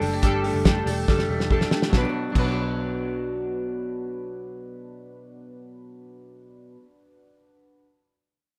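A straight 4/4 pulse drives this brief, wistful and restless slice of jangly indie pop. A cloth-damped, thuddy drum kit with a fat snare and dark cymbals sits up front, plays a fill from 1.1 to 1.9 seconds as the harmony moves from Gsus2 to B minor, then drops out at 2.5 seconds, while a foam-muted, round picked bass holds the low end. Around them, a full-bodied fingerpicked steel-string acoustic guitar, a twangy, slightly broken-up electric guitar playing arpeggios through tape echo, and glossy, detuned, chorused retro synth keys carry on in a dry, rough home-demo mix.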